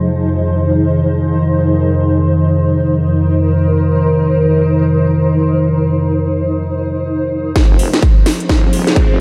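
A dreamy, reverb-soaked mix opens on a bright, detuned sawtooth pad sustaining an F minor chord with chorus and a pumping sidechain, layered with a blurred, granular cloud pad that drifts in free time through this bouncy yet aggressive bass house passage cut from a longer piece. At 7.6 seconds a build-up arrives with a drum fill: a punchy, tape-warm electronic kick sits up front beside an overdriven house kit of cracking snare and metallic hats heard in a large room, while a heavy, saturated wobble bass wobbles underneath. A very quiet electronic riser joins at 8.2 seconds.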